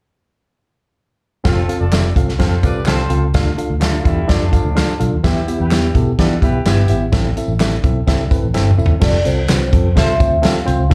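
Passionate and driving, this uptempo 1960s-style soul excerpt moves over a straight 4/4 groove from a natural country drum kit with bright cymbals and a punchy kick, alongside a dark, round, foam-muted fingered electric bass, very quiet tambourine and handclaps, and a worn, slightly out-of-tune tine electric piano that is lightly overdriven with plate reverb and slapback echo. A distant, roomy horn section with light vibrato carries a second line, while an electric guitar through a small old amp adds a slightly broken-up, lo-fi riff between 3.8 and 5.0 seconds. After a drum fill, a ringing, mellow vibraphone with soft mallets and slow motor vibrato takes the melody from 9.0 seconds, all heard through a venue's PA with club ambience.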